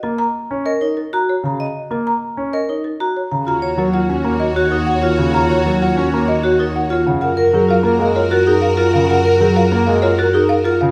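A woody, rustic folk marimba carries the melody from the opening moment of this excerpt of classical minimalist pattern music, set beside a clear concert grand piano whose accompaniment sits up front with deep bass. Within a second, at 0.7 seconds, a metallic vibraphone joins with ringing arpeggios and a slow motor vibrato, both mallet instruments played with medium hard mallets in a boxy small room. At 3.5 seconds the texture deepens: a mellow, hollow alto flute adds a soft-attacked second line in the background, a smooth studio string section holds sustained bowed chords, and a bowed double bass enters with expressive portamento and vibrato. The piece moves at 192 BPM in 6/4 with a straight feel in Eb minor, its harmony shifting from Ebm to Ebm7 and then to Gbadd9. A moderate recital hall reverb surrounds the ensemble, and the insistent repeating patterns give the music a hypnotic yet urgent mood.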